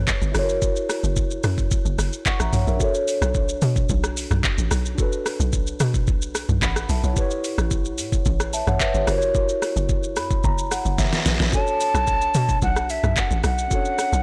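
Deep and soulful, this amapiano excerpt in B minor moves at 110 BPM in a straight 4/4, with a mellow tine electric piano glowing through a phaser over a tight, punchy log drum bass and an up-front electronic R&B kit of knocking kick, deep soft-clipped snare, metallic hats, handclaps, rim clicks, shaker and toms, with piano fills at 2.0 and 9.9 seconds and a drum fill at 11.0 seconds before an airy, hollow jazz flute with tape echo takes the melody at 11.5 seconds, all inside a blown-out, overdriven digital ambience.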